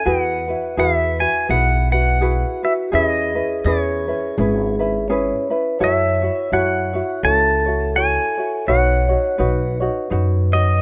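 An up-front electric pedal steel guitar carries the melody in this sunny, relaxed Hawaiian excerpt, its warm, clean, compressed tone shaped by fingerpicks, slide and volume swells. Beside it, an acoustic ukulele, thumb-plucked and light, provides close, present accompaniment, while a vibraphone struck with medium mallets, motor off, adds a metallic, ringing second line. An upright bass played pizzicato on steel strings gives a woody low end that sits forward in the mix. The tune moves at an easy 84 BPM in 4/4 with a gentle swing on the eighth notes, in E major, moving through Eadd9, C#m7/E, F#m7 and Badd9. The sound is dry and close, with the rough, unpolished feel of a home demo, and it breaks off at 10.8 seconds as part of a longer piece.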